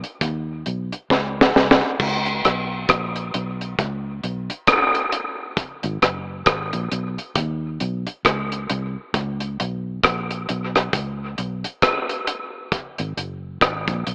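Dub reggae with a heavy, meditative mood, this excerpt sets a deep, up-front drum kit of kick, high-tuned snare, rim click, hi-hat and crash against a vintage muted fingered electric bass that enters at 0.2 seconds, its tone round, amped and foam-muted. The drums sound dry, smooth and tight in the kick, with a rolled-off top, and a fill from 1.1 to 2.0 seconds leads into the longer second section. Wet spring reverb and an AM radio coloring lend the whole a hazy, boxed-in character over a swung sixteenth-note feel.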